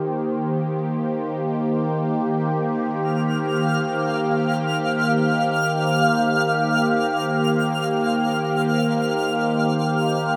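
Reflective and spacious, this ambient excerpt drifts in free time in C minor, resting on a single Cm7 chord. An analog pad holds sustained chords from the start, its detuned sawtooth tone smooth and soft in attack, with chorus and a moving notch giving it a bright, up-front presence. At 3.1 seconds a granular texture enters high above, twinkling and sparkling with an octave-up shimmer and an FM edge, its slow attack easing it into place through its own built-in reverb. Both parts sustain together until the close at 10.4 seconds. A huge, wet reverb with a long 8.5-second tail surrounds the sound, so the piece feels like a brief glimpse cut from a larger work.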